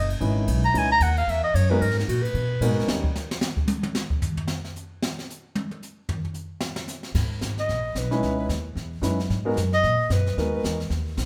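This is a brisk small-group jazz piece in swing and bop style, moving at 224 BPM in 4/4 with a swung eighth-note feel in G# minor, and its mood is cool and late-night. A clarinet with a mellow, present tone and vibrato carries the melody out front, while pizzicato upright bass with a woody, steel-string sound holds down the low end. An upright piano with an open character adds accompaniment, and a brushed drum kit brings an airy studio feel, dark cymbals, a high-tuned snare and a boomy kick. The opening chords, including C#m9, G#m9 and D#7, support the clarinet's solo. Around 2.9 seconds the drums take a solo, and at 7.1 seconds the bass returns with the rest of the group following to close out this section cut from a longer piece. The band plays live together in one large studio room with moderate reverb, giving the recording a natural, roomy ensemble sound.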